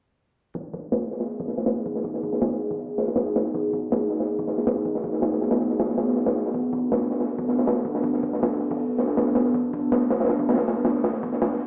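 A crunchy, saturated breakbeat kit sits up front from 0.5 seconds, its tight kick, medium-tuned snare and hi-hats carrying a gritty, rolled-off top in this dark, atmospheric drum and bass and jungle cut at 160 BPM in G# minor. At 1.0 seconds a warbling, detuned tape-like pad enters with slow-attack sustained chords, nostalgic and lo-fi with chorus and 12-bit sampler grit, moving from G#m7 to Bm7 at 6.5 seconds. A filter sweep runs through the whole passage, and a moderate plate reverb and a large studio reverb lend the sound the feel of a big system playing in a bare room.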